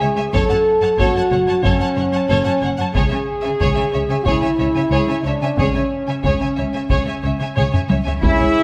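Heard in a moderate scoring-stage reverb, this dark, relentless epic orchestral film cue in C# minor at 92 BPM sets up-front French horns holding sustained chords over lush bowed violins carrying a focused vibrato melody and a smooth-topped second line, an even viola accompaniment, expressive cellos and shadowy double basses on the bass, and heavy-stick taiko that enters at 0.3 s as the harmony moves from F#m to C#m, with a drum fill at 7.6 s before a pure flute, very quiet dark trombones, soft-edged woodwind chords and trumpet stabs arrive at 8.2 s just as the fragment cuts off.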